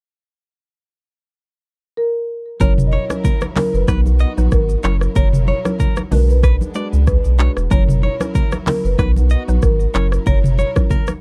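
A woody marimba melody with delay opens this romantic, sunny afrobeats excerpt at 2.0 seconds, and at 2.6 seconds the full groove arrives: an electronic afro-pop kit with a deep kick, metallic hi-hats, handclaps, rim clicks, shaker and toms, up front beside a round sine sub bass. Around them, a vintage-sounding FM synth pluck with chorus adds mellow accompaniment, a bright, twangy direct-recorded clean electric guitar plays a picked riff, and thin-skinned congas and a lush, bowed string section with vibrato and portamento sit in the background. The dark, dry production moves through a swung sixteenth-note feel over chords built around F#7, B and Bm6.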